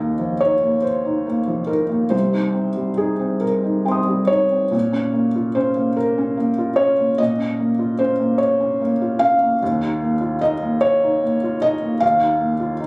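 A felt-muted upright piano carries this short neoclassical minimalist piece alone, its soft, boxy tone sitting up front with the thin felt and audible action noise giving it an intimate, close-up character. The mood is reflective and melancholic, moving slowly at around 46-51 BPM in a rubato 6/8, in Bb dorian with the tuning set at A4 = 439 Hz. The piano spans from C2 up to Eb6, opening on an Ebsus2 that gives way to C minor before a new section begins at 4.7 seconds on Bb minor, and the harmony returns to Ebsus2 at 9.6 seconds. A moderate spring reverb and a club-like room ambience surround the instrument, and the sound was captured on a phone in the room and compressed. Cut from a longer work, the clip lasts just under 13 seconds.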